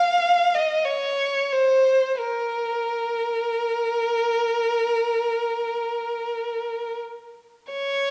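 Lonely and yearning, this brief classical excerpt, cut from a longer piece, features an unaccompanied violin playing freely in Bb minor, with an expressive, free sense of time. A single bowed violin carries the whole passage from 0.0 to 8.1 seconds, staying within a narrow range from Bb4 to F5. Its tone is rich and focused, shaded with vibrato, and it sits up front in the mix while still carrying a distant quality. A moderate scoring-stage reverb, with a decay of about 1.7 seconds, surrounds the instrument and lends the solitary line a sense of space. The result is an intimate, searching moment for one player alone.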